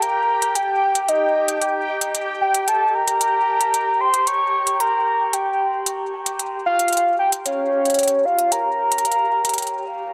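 A crisp electronic hi-hat sets a straight 4/4 pulse at 113 BPM in this melancholic, cerebral IDM excerpt, its overdriven hats sitting up front with the grit of a small room. Over it, a warbling, nostalgic lead carries the melody across a range of Db5 to Db6, built from detuned sawtooth, triangle, square and sine layers with a sub octave, a fast attack and sustained notes, softened by chorus, vibrato and a dub echo. Beneath sits a quieter bubbling texture between G4 and G5, a resonant detuned sawtooth stepping through random filter changes with a slow attack, long release, chorus and its own built-in reverb. The hi-hat drops out at 9.7 seconds, leaving the lead and texture to ring on until the fragment ends at 10.1 seconds. An echo chamber reverb with a 2.3-second decay gives the mix a heavy, echoing depth.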